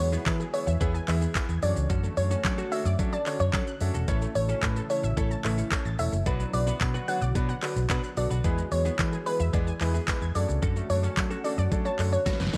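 A glassy, crystalline wavetable pluck carries the melody from the first moment, its detuned, chorused tone set against a baby grand piano with long sustain, a twangy clean electric guitar riff, and a round, foam-muted fingered bass that sits up front. This is carefree, summery dance-pop at 110 BPM in a straight 4/4, cut from a longer piece, with the chords moving through E, Dmaj7, A and Bm. A pop drum kit with a knocking kick, fat snare, crisp hats, handclaps and shaker drives the groove, while a very quiet, jingly tambourine enters at 0.3 seconds. The pluck, piano, bass and a lush, sawtooth-based unison pluck playing arpeggios in the background all carry sidechain pumping, and both plucks carry a slapback echo. An ethereal FM pad with slow attack holds sustained chords underneath, and the mix sits in light reverb and digital ambience before a drum fill closes the passage at 12.3 seconds.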